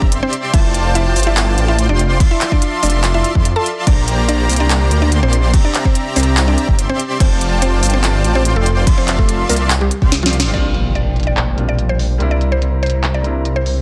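Future bass in F major at 144 BPM with a half-time feel, this lush, bright drop sets a hard-clipped electronic kick and a trap kit of crisp hats, sharp snare, handclaps and crash against a thick, saturated detuned saw bass, a huge compressed supersaw riff colored by cassette tape, a low-pass filter and delay, a woody, round mallet-like pluck melody and soft, airy lead arpeggios in the background, the synths pumping with sidechain, until at 10.5 seconds a background impact lands as a clear, worn grand piano and dark, muted strings under a filter sweep enter.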